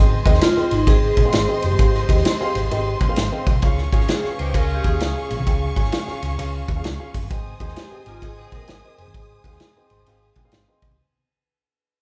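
Uplifting and warm, this uptempo 1960s-style soul excerpt swings at 131 BPM in Ab major, with a vibraphone carrying the melody in a metallic, ringing tone with slow motor vibrato. Beneath it sit a dark, woody upright piano, a round, amped hollow-body picked electric bass, a punchy, up-front vintage drum kit with dark cymbals, and barely audible bright congas, while a lush bowed violin section plays a second line and a clear horn section with octave doubling joins in the background from 3.9 to 8.9 seconds. The band plays live in one room with moderate large studio reverb, and the whole excerpt fades out as the piano plays a fill from 9.6 seconds.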